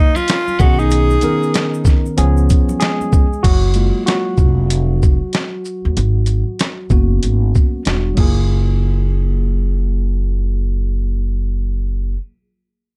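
Jazz-hop excerpt with a relaxed, smooth swing, where a breathy, subtoned tenor saxophone with plate reverb opens the melody over a dark, clean fingered electric guitar line, both stopping by 2.1 seconds, as background congas and maracas in a small room play briefly, joined moments later by a gritty, compressed, pitched-down boom bap drum kit with a thumpy kick, a woody pizzicato upright bass up front, and a worn, slightly out-of-tune tine electric piano that takes a solo from 3.4 to 8.5 seconds before carrying on alone with the bass to the end.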